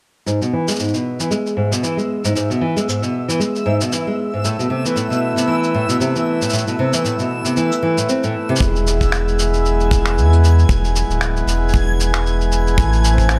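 A bright, fingerpicked nylon-string guitar sits up front, spinning classical-style arpeggios through a low-pass filter sweep and digital delay in this wistful, autumnal folktronica piece cut from a longer work. Beneath it, muffled, pitched-down shaker and finger snaps carry a sampler-style, overdriven grit with a gentle swing, while a reversed, granular texture drifts dreamily in the background with a soft attack and long release. At 4.4 seconds a reedy, breathing harmonium adds nasal, airy sustained chords as the harmony moves between E and Amadd9. At 8.6 seconds the guitar falls away, and a round, mellow sine sub bass, deep and up front with tube saturation, arrives with a punchy acoustic kick whose pumping room sound sits at the back of the mix. Light reverb and a small-room ambience keep the whole piece intimate.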